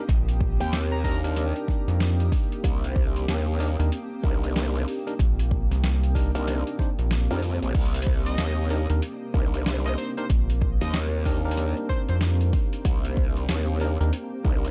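A rubbery, hollow square bass sits up front with tube saturation, joined from 0.6 seconds by a growling, wobbling bass that adds aggressive, chorused bite to this gritty, playful glitch hop excerpt in 4/4 with a swung sixteenth feel. A punchy, layered electronic kick drives the groove, dropping out briefly at 7.1 seconds, while a pitched-down, compressed boom bap sampler-style kit supplies snare, hi-hat and crash cymbal in studio reverb. Bright, clean tine electric piano stabs pump against the sidechain and trail digital delay over a Cm9 chord. A smooth, detuned analog pad holds sustained chords in the background, and a very quiet granular cloud pad drifts and blurs above. A catchy, full-bodied plucky unison lead with digital delay flashes in briefly near the start and returns from 8.3 to 12.2 seconds, all within a dark, dry production.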